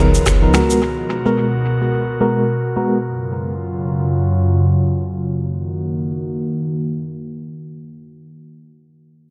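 Afrobeats at 108 BPM in F# major, this breezy, romantic fragment from a longer piece has a swung sixteenth-note feel and an echo-heavy mix with light reverb. A booming analog drum machine with a deep kick, dry and up front, sounds only briefly with finger snaps, rim click and shaker through analog delay. Meanwhile a soft, woody kalimba rings on a single F#4 riff in the background, band-limited and vintage, before dropping away by 0.6 seconds. A mellow FM electric piano with tremolo and a fast, decaying attack carries the accompaniment up front until 3.0 seconds, moving from C#13 to G#m9. An airy, breathy pad with a slow attack, long release and detuned chorus shimmer sustains the chords up front, then holds the space alone through C#add11/F# and settles on F#6, while a filter sweep shapes the opening stretch.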